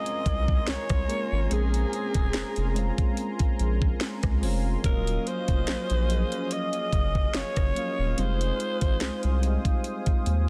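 A raspy, gritty alto saxophone carries a moody, longing melody over round, chorused and phased electric-piano-like synth keys, a mellow detuned analog pad and a faint electronic downlifter, as a trap drum kit with a knocking kick, sharp snare, metallic hats and 12-bit sampler grit joins at 0.1 s and a thick, saturated sub bass arrives at 0.3 s in this dry, dense, heavily limited contemporary R&B passage cut from a longer piece.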